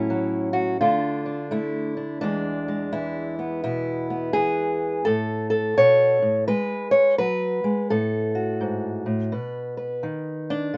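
A fingerpicked steel-string acoustic guitar opens this folk excerpt alone, its dark, up-front tone carrying a gentle swing at an unhurried 85 BPM in 4/4. The mood is hopeful and peaceful, with the single guitar spanning from a low E2 up to C#5. Chords move from F#m/A through Dm and E before settling on A at 5.1 seconds, then drift through F#sus24 and back to F#m/A before reaching B at 9.3 seconds. Audible finger squeaks give the playing an intimate, human texture, and the tuning sits slightly below standard concert pitch at A4 = 437 Hz. Light reverb surrounds the guitar, and the passage is cut from a longer piece, ending at 10.8 seconds.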